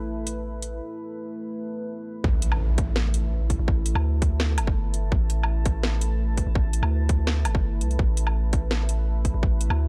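A deep, mellow sine 808 bass sits up front through this dark, spacious half-time drum and bass excerpt, under a moody detuned sawtooth pad carrying chorus, reverb and 12-bit sampler grit with sidechain pumping, while a layered kit of cracking snare, metallic hats and woodblock enters at 0.3 seconds before a hard-clipped, overdriven electronic kick and a very quiet impact mark the drop at 2.2 seconds, all in a dry, gritty hardware sound.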